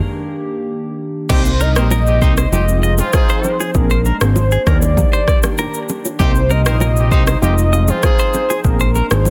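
Smooth and mellow, this afrobeats passage opens with a hollow, flute-like pad holding dark chords alone before the band arrives at 1.3 seconds, led by a velvety, detuned synth melody with chorus and tape echo over a worn, slightly out-of-tune tine electric piano treated with phaser. A fat, saturated analog bass and an up-front electronic drum kit with a deep kick, rim clicks, shaker, crashes and a softly clipped snare carry the low end, while a tight vintage horn section plays a second line, soft-handed congas and bongos sit in the background, and a twangy, direct-recorded clean guitar riff enters just after, adding tremolo and tape echo. The mix is dense and heavily limited, set in a digital ambience.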